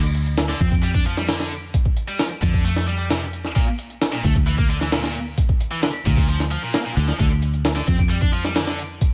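A dark, round fingered electric bass opens this energetic, swaggering breakbeat excerpt, joined at once by a compressed, pitched-up sampler-style drum kit with a thumpy kick, high-tuned snare and hi-hat sitting up front, and at 0.5 seconds by a bright, double-tracked high-gain guitar riff coloured by distortion, 12-bit sampler grit and digital delay, all over a bed of vinyl crackle as the harmony moves from D minor to B-flat and back.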